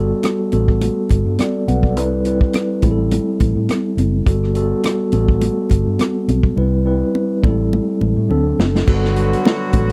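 A mellow tine electric piano and a dark, round, foam-muted electric bass open this lush, smooth 1970s-style soul excerpt in G major at 104 BPM with a light 16th-note swing, joined at 0.2 seconds by a dry, up-front acoustic drum kit with dark cymbals and a tight kick and by bright, high-tuned congas in the background, with the drums playing a fill from 6.6 seconds before a warm jazz-style horn section with light vibrato and slapback echo punches in with stabs at 8.9 seconds over a return to Gmaj9.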